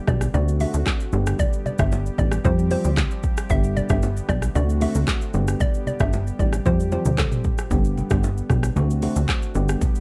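A dark production with light reverb frames this joyful, breezy afrobeats excerpt, cut from a longer piece and moving in a straight 4/4. An electronic afro-pop kit sits up front with a deep kick, metallic hi-hats, handclaps, rim clicks, shaker and toms, all pushed through overdrive. A punchy, funky analog bass with a wave-folded, filter-plucked bite holds the low end, while a worn, slightly out-of-tune tine electric piano, played clean through a combo amp, fills in the harmony over a D7, G and Fsus2 cycle. A hollow, bouncy square-wave pluck carries the melody with chorus and tape echo until 7.6 s, and a smooth, detuned sawtooth pad with chorus sustains chords in the background. Very quiet acoustic bongos and congas, heard as if in a small room, add a gentle layer beneath it all.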